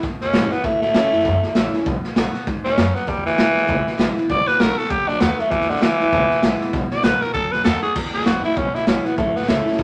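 A moderate studio reverb surrounds this upbeat, rollicking rockabilly excerpt, which runs at 197 BPM in E major with swung eighth notes. A saturated, punchy garage drum kit pumps up front from the start, while a thumpy pizzicato upright bass and a bright, picked steel-string acoustic guitar sit behind it, the guitar tucked into the background. At 0.2 seconds a raspy tenor saxophone enters with a clear, vibrato-laden solo melody up front, riding over changes of E, A and B7.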